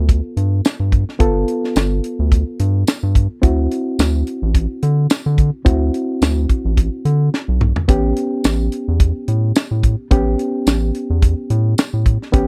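Straight-eighth soul blues with a gritty, swaggering mood, cut from a longer piece, where a tight funk drum kit with a high-tuned snare, tight kick and tambourine sits up front beside a round, deep, wave-folded analog bass, while a reedy, worn, slightly out-of-tune electric piano played through its built-in speakers provides accompaniment over ninth chords in a dry, close 1970s-style studio sound, broken by a drum fill at 7.3 seconds.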